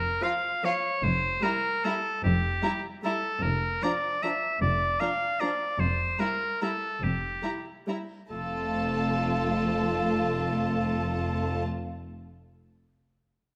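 Festive and elegant, this rubato classical passage in F major moves in 3/4 at 132-163 BPM, where a bright, up-front oboe sings a second line over a lush bowed string body of smooth-topped violins carrying the melody, a distant, rich second violin line, close viola accompaniment with portamento, warm cellos and a clear, even double bass section on F, all bathed in moderate scoring-stage reverb as the music slows from 5.2 to 8.3 seconds before settling on an F chord.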